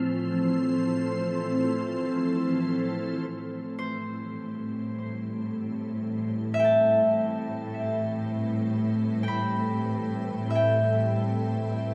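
Ambient, serene and melancholic in free time and A minor, this excerpt opens on a pure, organ-like pad with chorus, holding sustained chords that move from Fmaj7/A to Am9 as a dark, veiled muted cello section enters on the bass at 3.3 seconds and a bright, ringing concert harp adds echoed arpeggios from 3.8 seconds, all set in a vast cathedral reverb.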